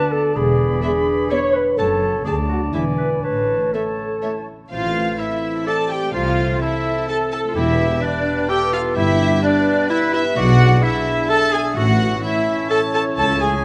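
Set in a moderate scoring-stage reverb, this excerpt of a playful, whimsical film cue in 3/4 at 127 BPM moves from A major into A minor and back with a magical, mischievous air: a sul tasto chamber violin section carries the melody from 0.8 s over a quieter second violin line, a viola section accompaniment, a soft-bowed cello section and a smooth-topped double bass section entering at 0.4 s, while a clear clarinet, an airy flute in the background and a mellow, distant cor anglais weave second lines, a dark, roomy French horn section holds sustained chords, a bright, ringing harp plays arpeggios, and a close-miked tuba joins the bass from 4.7 s.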